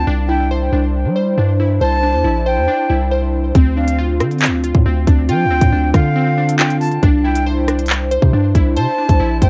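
A breathy silver concert flute, glassy detuned digital keys and a deep, long 808-style bass open this menacing, cold drill cut together, setting a half-time feel at 138 BPM in 4/4. The keys spin arpeggios between C4 and C5 with a fast attack, a filter sweep and a chorus shimmer, while the close-miked flute carries a tongued, straight-tone second line between F5 and A5, expressive and metallic. Underneath, the sine-like bass sits up front, striking quickly and decaying over a span from Bb1 to G3. At 3.5 seconds the electronic drill kit arrives up front with a hard-clipped kick, crisp hi-hats, handclaps and rim clicks. The harmony moves from Cadd9 to Dm7 and back to Cadd9 at 7.0 seconds. Cassette tape colours the flute, keys and drums, tape echo trails the flute and keys, and the home-recorded sound stays dry and close in this fragment of a longer piece.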